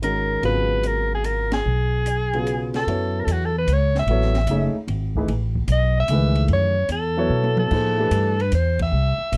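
A clear, forceful soprano saxophone leads this searching, spiritual modal jazz excerpt in F# dorian, its vibrato and scooped notes sitting up front over a swung 3/4 pulse at 149 BPM. A woody upright bass plays pizzicato beneath a warm grand piano, which drops out at 8.3 seconds, while an open acoustic drum kit with a high-tuned snare and a boomy kick adds a fill at 7.3 seconds. Band accents punctuate the tune as the harmony moves from G#m11 through F#m9 to Am9, all captured in a dry, close, small-room studio sound with a vintage 1970s character.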